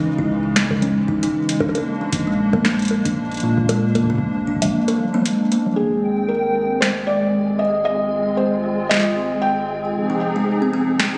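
A hollow, flute-like pad with ensemble chorus opens this intricate, glitchy IDM excerpt, soon joined by a woody kalimba with tape echo, a round sub bass, a deep kick in the background and an up-front, booming analog drum machine of bongos, congas, metallic hi-hat and crisp snare, before a felt-muted upright piano carries the melody through digital delay from 5.8 s and a flickering, grainy texture with its own reverb creeps in at 6.5 s, the whole captured on a phone in a room with club reverb and compression.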